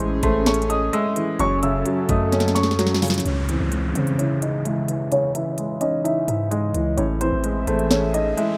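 Eerie and brooding, this short half-time trap and hip hop cut at 129 BPM in C# harmonic minor sets a dark, mellow baby grand melody with digital delay over a worn, up-front grand piano accompaniment, both carrying audible action noise. Alongside them play an airy, breathy pad with chorus, a deep, sine-like 808-style bass with long decaying notes, and an overdriven trap kit of knocking kick, sharp snare and crisp hats that plays a drum fill from 2.3 to 3.3 seconds. At 3.3 seconds an electronic downlifter and riser enter under a filter sweep as the chords move from Amaj7 and F#m to C#madd9, all in a rough home-demo mix with light digital ambience.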